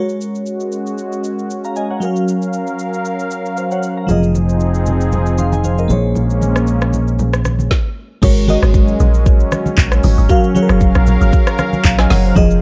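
Hypnotic and late-night, this amapiano excerpt moves at 116 BPM in 4/4 with a gentle 16th-note swing, opening on a crystalline, sparkling FM electric piano with chorus and tremolo over a smooth sawtooth pad with sidechain pumping, while a deep house kit of deep kick, woody snare, smooth hats, handclaps, rim click, shaker and crash drives things up front. At 4.1 s a round, punchy fingered electric bass and very quiet, low-tuned congas join as the chords move from Ab9sus4 and Gbmaj7 to Fm7 and Bbm9. After a brief stop at 7.7 s, the drop at 8.2 s brings in a deep, percussive log drum bass that sits prominently in a dark, ambient mix.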